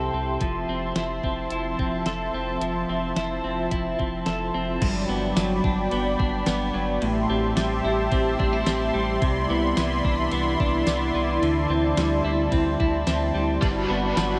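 A straight 4/4 pulse at 109 BPM from a 12-bit drum machine with a thumpy kick, fat snare, hi-hat, ride, crash and tambourine, entering at 0.4 s, carries this dreamy, blissful dream pop excerpt in G major, where a detuned sawtooth pad holds smooth, chorused chords up front, a compressed clean electric guitar picks tape-echoed arpeggios, a round sine sub bass sits deep beneath, a bright, double-tracked overdriven guitar with tremolo arrives at 13.6 s over the closing Gmaj7, and a huge reverb with a 7.8-second tail soaks the mix through a progression from Fmaj7 to D9sus4.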